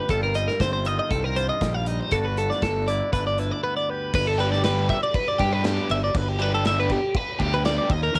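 Compressed, up-front twelve-string electric guitar arpeggios open this wistful, playful math rock and midwest emo excerpt in G major at 119 BPM over Eb69/G and Gmaj9 chords. They are joined at once by a clean, twangy electric guitar, a round, fuzzy fingered bass and a loose indie drum kit with dark cymbals, a tight kick and a pumping small-room sound. A double-tracked overdriven guitar riff enters at 4.4 seconds over a G chord, all in a dry, cassette-taped home recording.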